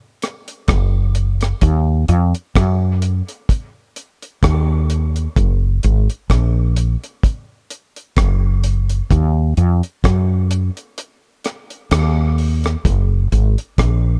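Hazy and spacious, this dub reggae excerpt settles into a slow 64 BPM in 4/4, with a gentle swing on the sixteenth notes. A deep reggae drum kit enters at 0.2 seconds, its hi-hat, kick drum and rim click sounding dry and dark with a tight kick and a rolled-off top. A woody fretless electric bass joins at 0.7 seconds, round, hollow-bodied and punchy, moving between F#1 and F#2 and sitting a little louder than the drums. Both parts are placed up front in a close, nearly reverb-free sound, the bass direct and the kit smooth. A break runs from 11.0 to 12.8 seconds, and the bass carries on until the cut at 14.2 seconds.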